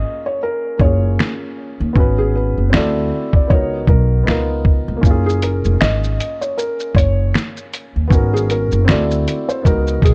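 A felt-muted upright piano opens this mellow, nostalgic lo-fi hip hop fragment, its soft, intimate melody carrying audible action noise and an analog delay, while a woody upright piano plays accompaniment, both filtered dull and shifting through lush ninth, eleventh and thirteenth chords. At 0.8 seconds a dark, pizzicato upright bass and an up-front, sampler-style drum kit join with a swung feel: a thumpy kick, fat snare, hi-hat, shaker and finger snaps, all pitched down and muffled. Studio reverb and a cassette-tape character soften the whole recording.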